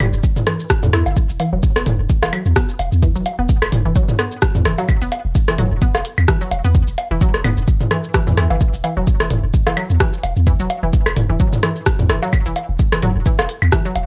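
Sparse and clinical, this minimal techno excerpt moves at 129 BPM in E minor with a 56% swing on the sixteenths, its deep, up-front electronic kick arriving at 0.2 s. A punchy sine sub bass with a pitch-drop attack pumps under the sidechain, while a squelchy, resonant blip pluck plays a riff through chorus, cassette tape colour, digital delay and sidechain pumping, stopping at 13.9 s. Two drum kits fill in the detail: a clicky minimal kit of cabasa, hi-hat and rim click, and a layered, tape-warm techno kit of rim click, toms and woodblock re-recorded in a small room, both set in studio reverb.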